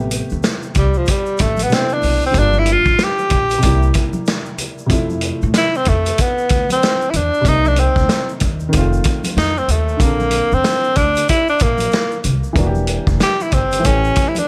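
Jazz-hop with a smoky, nocturnal swing, this excerpt features a breathy tenor saxophone soloing up front with vibrato and subtone from 0.8 seconds, over a dark, mellow baby grand piano, a woody, thumpy pizzicato upright bass, a vintage drum kit with a punchy kick and rolled-off top, and very quiet, bright egg shaker and congas, all in a small room ambience.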